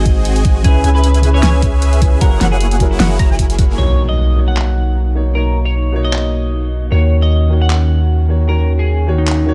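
This bright, playful future bass excerpt opens on a drop: huge detuned supersaw chords under a low-pass filter, a deep sine 808-style bass up front, a boxy grand piano with vintage 12-bit sampler grit, a clean picked electric guitar melody with analog chorus and delay, and lush, punchy pluck arpeggios in the background. The guitar, piano, pluck, supersaw and bass all pump with sidechain against a knocking, overdriven kick and a pop kit of fat snare, handclaps and warm low-passed hats. Just after the kick drops out, at 3.8 seconds the supersaw and pluck fall away as a background impact hits, and from 4.2 seconds a very quiet, airy, breathy pad joins the swung half-time groove in a dry, close sound.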